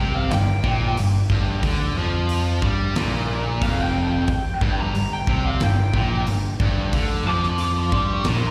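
Aggressive and driving, this short hard rock excerpt in G minor moves at 90 BPM in a straight 4/4, resting on a single G minor chord throughout its 8.5 seconds. A lead guitar through a small cranked amp carries the melody as a solo from the start, its overdriven, picked tone sounding warm and lo-fi, coloured by slapback and tape echo. Beneath it, two guitars play the riff in the low register: one bright and overdriven with slapback echo, the other a tight, distorted part sitting in the background with its own slapback. The fuzz-laden, picked electric bass is the loudest element, punchy and up front with a direct, amped bite. A huge arena drum kit enters at 0.3 seconds, its fat snare, punchy kick and hi-hat placed up front in a big room. The whole performance sounds like a live gig heard through the venue's PA, with small room and recital hall reverb around it.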